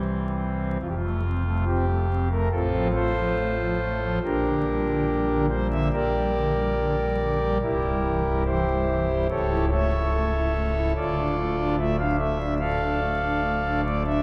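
A pipe organ on its foundation stops opens on a C chord and carries this reverent, serene classical chorale alone, its thick, romantic voicing sitting up front and spanning C1 to F5. At 71 BPM in 4/4 with a flexible rubato feel, the F major harmony moves through F, F/A, Gm/Bb and C before an A7/C# leads to a closing Dm at 11.0 seconds. A long church reverb, dark, warm production and vinyl crackle frame this short passage cut from a longer piece.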